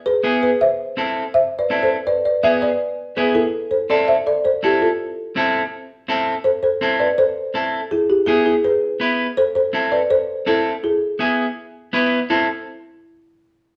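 A woody, rustic folk marimba played with soft mallets opens this danceable, passionate Latin excerpt, carrying the melody up front at a brisk 164 BPM in straight 4/4. From 0.2 seconds a clean electric guitar joins as picked accompaniment, also close in the mix, as the harmony sways between A minor and E and E7 in A harmonic minor, tuned to A4 = 442 Hz. A reverberant studio room surrounds the pair, and both parts play through to 12.5 seconds before the passage cuts off.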